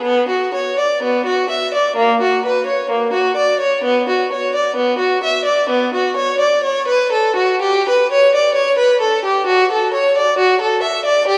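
Flowing rubato at 64 BPM in 4/4 shapes this solemn, baroque-style classical suite movement in B minor for unaccompanied violin, heard as a short cut from a longer piece. A single bowed violin plays alone from 0.0 to 11.4 seconds, its rich, smooth tone carrying vibrato and sitting up front in the mix. A dark production and a wet church reverb with a 2.8-second decay give the instrument a distant, resonant halo.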